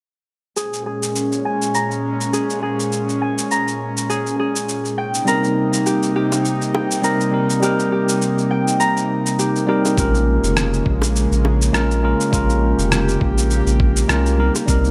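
Smooth and warm, this sunset chillout excerpt in Bb dorian moves at 102 BPM with a swung 16th-note feel. It opens at 0.6 s with a breathy, detuned pad with chorus, ringing fingerpicked Celtic harp arpeggios carried through a filter sweep and digital delay, and a gritty, overdriven electronic shaker and rim click. A clean tine electric piano with its own delay joins at 5.2 s, followed by soft-handed, high-tuned bongos, before a round, deep analog bass and a thumpy, compressed electronic kick arrive at 10.0 s as the chords move between Bbm7 and Cm7, all set in a moderate concert hall reverb with the bass, pad and electric piano up front and the kick in the background.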